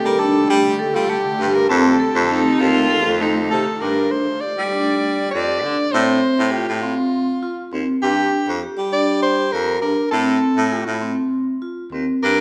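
A soprano saxophone with a smooth top carries a pensive, urgent melody over ringing vibraphone arpeggios and a shimmering, ethereal pad treated with chorus, phaser and built-in reverb, in this passage of contemporary chamber music in 7/8 at 200 BPM in G minor. A baritone saxophone supplies the bass line with light vibrato and a soft attack, while a focused, bowed viola adds a brief second line from 2.3 to 3.8 s, when the pad also falls away. From 3.8 s the harmony shifts to alternating G5 and F/A chords, and the ensemble sits in a recital hall's reverberant glow.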